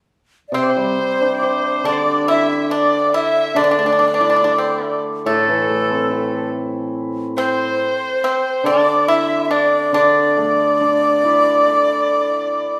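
A bright, airy bamboo xiao carries the melody from 0.5 seconds to the end at 12.8 seconds, its crisp attack, vibrato and lifted highs sitting just ahead of the other parts in this graceful, festive piece for Chinese chamber ensemble. A rich, earthy erhu, bowed by a single player with light vibrato and portamento, shares the xiao's register as a second line. Beneath them, a pipa played with fingerpicks adds a dry, percussive second line, while a shimmering, ringing hammered dulcimer sits up front as accompaniment across the lowest range of the group. All four instruments play together throughout in a freely timed rubato feel. The ensemble is heard in the reverberant sound of a recital hall, and the recording is cut from a longer piece.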